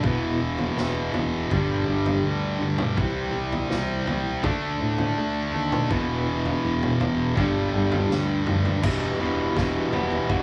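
A straight 4/4 pulse from a gritty, saturated garage drum kit with punchy kick, snare, toms and crash drives this brooding, angsty quiet-loud alternative rock excerpt, where an up-front high-gain distorted guitar riff sits over a growly fuzz bass and a twangy twelve-string electric guitar's clean, compressed arpeggios shimmering with harmonic tremolo in a dry small room, until a drum fill at 8.1 seconds opens the way for a second, overdriven guitar riff entering in the background at 8.8 seconds.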